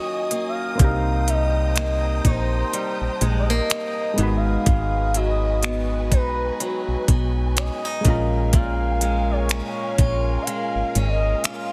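A slow 62 BPM groove in 4/4 with a lightly swung sixteenth feel drives this late-night, longing contemporary R&B excerpt in C phrygian: an up-front trap drum kit of knocking kick, crisp hi-hat and finger snaps arrives at 0.3 s, and a punchy, round FM bass joins at 0.8 s. Boxy picked archtop guitar arpeggios with tape echo, mellow electric-piano-like synth keys with chorus, and a distant, lush bowed string section with sidechain pumping sit beneath a smooth, gliding sawtooth lead that carries the melody with vibrato, chorus and tape echo. The chords move from Ebm7 through Cm7, Abm7 and Bbm7, and the mix sits in light digital ambience under a dense, heavily limited modern master.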